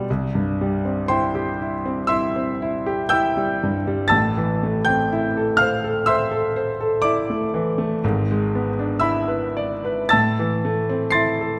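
A clear, up-front concert grand piano opens alone in a nostalgic, serene romantic nocturne, moving at a relaxed 60 BPM in 4/4 with a flexible rubato feel. Its worn yet natural tone reaches from deep bass up into the high treble, drifting from C through A minor and E7/G# before settling back on A minor at 10.1 seconds. A moderate recital hall reverb surrounds the instrument in this short passage cut from a longer piece.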